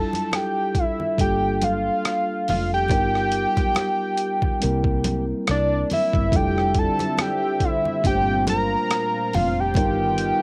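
R&B with a neo-soul lean, this smooth, soulful excerpt moves at a relaxed 70 BPM with a 16th-note swing in G dorian, opening on an Fmaj13 and drifting through Gm9, an altered G7 and C7. A fat, detuned analog lead carries the melody up front, colored by cassette tape and plate reverb, over a mellow tine electric piano, a gritty boom bap sampler-style kit with a thumpy kick and rim clicks, ringing congas in the background, and a round, woody fretless bass that enters at 1.2 seconds under a subtle chorus. A smooth, chorused analog pad with soft attack and long release joins at 6.3 seconds, and the whole take carries the intimate feel of a home cassette recording in a small booth.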